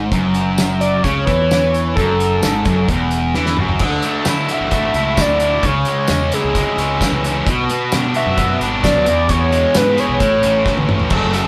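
A double-tracked fuzz guitar riff sits up front from the very start, joined by a punchy, growling fingered bass and a loose acoustic indie kit with dark cymbals, tambourine and a pumping room sound in this cool, moody indie rock passage cut from a longer piece. At 0.8 seconds a screaming, gritty synth lead with vibrato takes the melody, its saturated sawtooth-and-square tone sounding almost guitar-like. A drum fill at 3.3 seconds leads into the second section, where the chords move from Dadd9 through C#m, Bm and E to A, and a second fill at 10.7 seconds closes it, all captured as a band playing live in one studio room with moderate reverb.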